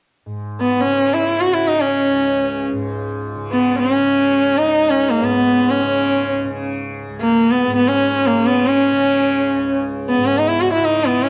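Hindustani classical music in free time, this short excerpt cut from a longer performance sets raga Kafi on C# in a solemn, meditative mood. A tanpura drone begins at 0.3 seconds, bright and buzzing, softly plucked with a shimmering tone and a cassette tape character. Just after, at 0.6 seconds, a clear sarangi takes the melody up front, bowed by one player with a focused, somewhat boxy sound, light vibrato and gliding portamento, its sympathetic strings ringing beneath each note. A second sarangi follows almost at once as a very quiet supporting line, warm and expressive, with soft attacks, vibrato and its own gliding slides. The whole passage carries the intimacy of a home cassette recording, touched by light reverb.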